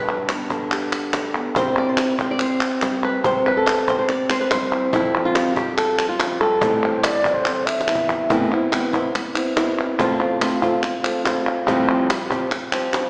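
Crisp, dry palmas and a snappy, hard-handed cajon drive a straight 4/4 at 142 BPM beneath a mournful, passionate flamenco passage in A minor, where a dark, boxy fingerpicked guitar with fresh strings and audible finger squeak carries the melody up front, a pure wooden baroque flute with vibrato and a soft attack adds a brief second line from 6.8 to 8.3 s that overlaps a drum fill, and a recital-hall reverb with a small-speaker tone colours this fragment cut from a longer piece.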